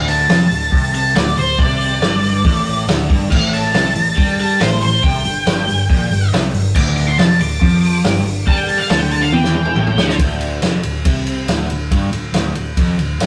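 Swaggering and driving, this blues rock and southern rock power-trio excerpt opens on a dark, fuzzy octave-fuzz lead guitar solo soaked in wah, distortion and analog delay, riding over a bright, double-tracked crunchy overdriven guitar riff colored by phaser. A round, foam-muted vintage electric bass and an up-front acoustic drum kit with a punchy kick, medium-tuned snare and rolled-off top push things along. A drum fill at 9.3 s closes the solo at 10.2 s, after which the riff guitar, bass and drums carry on in a rough rehearsal-room sound with wet small-room ambience.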